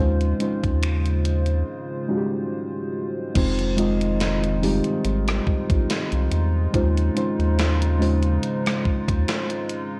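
Sensual and moody, this contemporary R&B excerpt in F minor moves at 71 BPM with a light swing, as muted, felt-like synth keys with chorus and a hollow, flute-like pad pumping under sidechain voice chords from Eb13sus4 to Fm7, a rubbery, nasal square bass bounces beneath, and a thumpy gated 80s drum machine with snaps, rim clicks and a gated reverb snare enters at 0.2 seconds, with a break from 1.7 to 3.4 seconds, all on dry, warbling old cassette tape.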